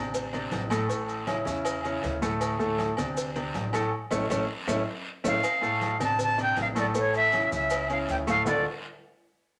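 This danceable, passionate salsa is cut from a longer piece and built on a concert grand piano sitting up front, intimate and polished, with deep bass, long sustain and audible action noise. Beneath it, a pizzicato upright bass on steel strings gives a woody, growly, thumpy low end. In the background, ringing medium-tuned congas played with soft hands sit in a live room, tight high-tuned cowbell and bongos sound close and dry, and a raspy guiro comes from a small room, while grainy, mellow maracas add a compressed, saturated shimmer. Agogo bells and timbales with a metal shell sound distant, as if placed in a large room, and a band accent from 3.9 s, joined by a drum fill at 4.3 s, drives the groove toward its next section. At 5.3 s a concert flute enters up front, pure and bright, with vibrato and a soft attack, floating over the Dm7 and A harmony in a moderate studio reverb.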